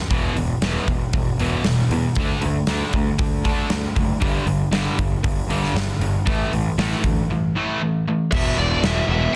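Aggressive and menacing, this short hard rock cut in E minor drives at 117 BPM, with a bright, overdriven, double-tracked stack guitar riff up front over a punchy, fuzz-soaked picked bass and a huge arena drum kit with crisp cymbals, a medium-tuned snare and a hard-hitting kick. The power-chord riff moves through E5, D5, G5 and A5 before a high-gain, distorted lead guitar enters at 8.3 seconds for a brief high melodic phrase as the riff returns to E5. The sound sits in a small room ambience with a dense, heavily limited modern master.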